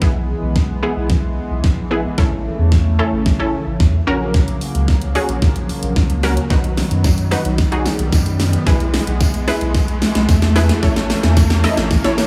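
Upbeat and summery, this dance-pop build-up rides a straight 4/4 groove and a drum fill from a smooth R&B kit with a knocking kick, fat snare and warm hats sitting up front in a small room. A punchy, detuned sawtooth unison pluck with a filter sweep and a shimmering, retro chorused pulse-width pad pump alongside a deep, saturated sub bass, all three breathing with sidechain pumping over chords moving from E/B through A, F#/A# and B. A background riser enters at 1.8 seconds, and a jingly, close and dry tambourine joins at 7.0 seconds under light reverb.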